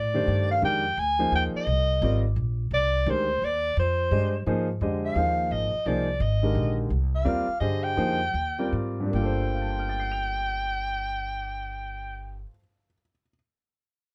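Modal jazz in a swung 3/4 at 146-172 BPM, spiritual and cool, with a breathy, whispered soprano saxophone carrying the intimate melody with vibrato over a woody, growly pizzicato upright bass and a warm, short-sustained baby grand piano, all in light reverb, easing down in tempo from 6.9 to 9.1 seconds before the piano rings on alone until 13.3 seconds of this piece cut from a longer one.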